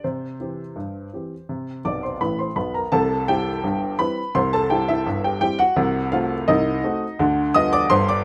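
A light touch of reverb and a faint mains hum give this brief fragment the feel of a live take in a single room. A solo upright piano sits up front, its woody, slightly detuned tone and audible action noise making the ragtime playing feel intimate and natural. The mood is cheerful and playful, moving in a straight two-beat metre across a range from G1 up to Eb6. A piano fill arrives at 1.8 seconds, leading into a new passage. The harmony rests on C before darkening to a diminished chord at 5.8 seconds and turning to G7 over D at 7.2 seconds.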